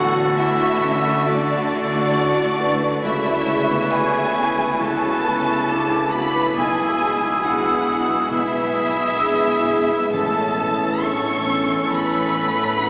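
A lush, up-front violin section carries the melody of this moving, hopeful cinematic film cue in a rubato 4/4, joined by airy flutes, a punchy oboe, a shadowy clarinet and a darker, woody second violin section, with a felt-muted upright piano whose action noise is audible, smooth violas, sustained French horn chords, ringing thumb-plucked harp arpeggios, cellos and a double bass section with portamento beneath, and soft-mallet timpani entering at 10.1 s, all bathed in a long cathedral reverb heard from further back through a small speaker.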